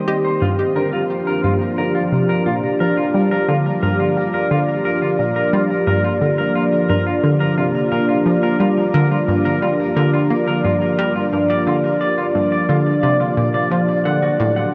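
A sweeping, resonant pad sits up front in this mysterious, expansive slice of ambient space music, holding slow-attack sustained chords from detuned, wave-folded sawtooth and triangle tones that evolve under chorus, phaser and a long release. Beneath it, an analog pluck drives the sequencer-like riff with a round, fast-attack sound of sawtooth and square waves, a noise layer and a filter sweep, thickened by chorus and tape echo. A clean electric guitar adds picked, twangy arpeggios higher up, its tape echo trailing each note. Shimmer reverb colours all three parts, and the whole mix floats in a huge, dark ambient space with a 7.5-second decay. The harmony rests on Gm7 for nearly the entire passage before turning to D at 14.1 s, and the passage is cut from a longer piece.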